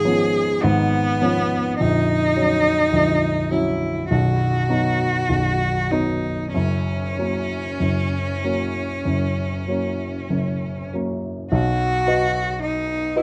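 A clear, smooth cello carries the melody in this short romantic classical passage. Its single bowed line is sung with vibrato and an even tone between B3 and G#4. Beneath it, a dark, mellow grand piano with a vintage character and short sustain supplies the accompaniment, reaching from A#0 up to D#5. The mood is serene and warm, set in B major at a slow 47-55 BPM in 4/4, with rubato letting the pulse breathe. The harmony moves from C#7 over G# through F# over A# to B and F#, and a new section begins at 11.5 seconds as the music settles on B. Both instruments sit up front, captured by close, detailed microphones with light reverb, in an excerpt cut from a longer piece.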